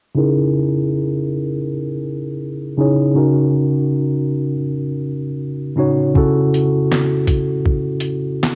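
Lo-fi hip hop at 80 BPM in C# dorian, reflective and hazy, with a lazy 16th-note swing, cut from a longer piece. A mellow tine electric piano carries the accompaniment from the start, sitting up front with a worn, slightly out-of-tune character softened by a low-pass filter and cassette tape, as if heard through built-in speakers. It moves through C#m69, D#m7/C#, and A6/C#, all resting over a C# in the bass. At 6.2 seconds a sampler-style drum kit enters with handclaps, hi-hat, a thumpy kick, and a medium-tuned snare, compressed, pitched down, and muffled, with a warm tape tone. Light reverb and digital ambience give the home cassette recording a soft, dreamy space.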